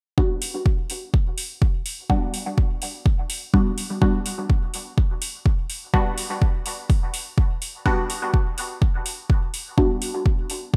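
Cavernous and nocturnal, this dub techno fragment at 125 BPM rests on a single Gmaj7 harmony, with a deep, overdriven electronic kick and metallic, dry electronic hi-hats, both up front in a small room reverb, driving alongside a muted, detuned sawtooth-and-square dub chord stab whose fast-attack filter pluck and short decay are colored by phaser, sidechain pumping and trailing dub echo.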